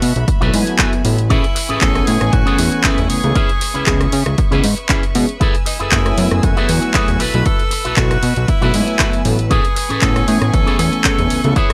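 This dry, gritty recording of a groovy, sleek nu-disco groove is cut from a longer piece, its sixteenths carrying a light swing. A fat, saturated analog bass sits up front with a thick, detuned sawtooth tone and a plucky filter, joined at 0.3 s by a punchy electronic kick, while a tape-warm house kit adds handclaps, hi-hat and rim clicks. A bright, twangy electric guitar plays a clean, picked riff through an envelope filter and lush chorus. Round, dark synth brass with vibrato and a filter sweep fills in the accompaniment from 0.4 s, pumping against the beat alongside a clear studio string section that holds biting, smooth-topped chords in the background. Over it all, an edgy tenor saxophone carries the melody with forceful, scooped notes and vibrato, trailed by an analog delay as the chords cycle from B7sus4 through Amaj9, C#m7 and F#m11.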